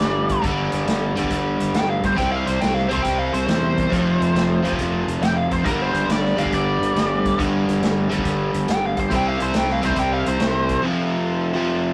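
A rough rehearsal-room recording with warm saturation and a moderate studio reverb carries this brooding, heavy excerpt of blues rock power trio and southern rock in G minor at 138 BPM with a swung 4/4 feel, where a biting, double-tracked rhythm guitar drives the riff up front, a wah-inflected overdriven lead guitar sings the melody, a growly, punchy fuzz bass and a vintage kit with a tight kick and rolled-off top hold down the groove, and a very quiet, gritty tonewheel organ through a slow rotary speaker sustains chords over Gm, Cm and F, with the organ and rhythm guitar ringing on alone after the rest stop at 10.8 seconds.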